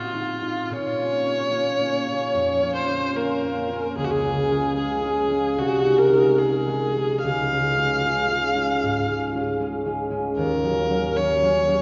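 At 74 BPM in 4/4, the beats fall unevenly and the tempo bends freely with rubato, giving this romantic classical duo for viola and harp a melancholic, elegiac mood. A single bowed viola carries the melody between F4 and F5 from 0.0 to 11.8 seconds, its tone rich, smooth and even, coloured with vibrato and placed up front. Beneath it the concert harp plays the accompaniment across a span from C2 to Gb4, its acoustic, thumb-plucked strings ringing with a warm glow, also close and present. The harmony moves through minor and dominant colours, opening on F7/A before settling on Bbm, brightening to Db, and closing on Ebm7 at 10.4 seconds. A wet church reverb with a long 3.5-second decay surrounds both instruments, and the sound is soft at the top, with nothing above 7.5 kHz. This short passage is cut from a longer piece and is tuned slightly high, to A4 = 443 Hz.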